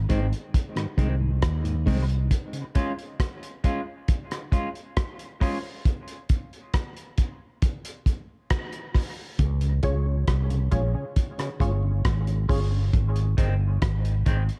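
A growly, punchy fretless electric bass opens this hazy, laid-back dub reggae excerpt at 68 BPM in 4/4 over a cloth-damped, thuddy drum kit of hi-hat, tight saturated kick and rim click, joined by a clean picked electric guitar with subtle chorus and dub echo and a round tonewheel organ on slow rotary speaker in the background, moving from Ab to Db through a break that runs to 9.4 seconds, when the bass and organ return under a filter sweep and muted, detuned sawtooth chord stabs pluck through a phaser and dub echo, set in a dark studio reverb.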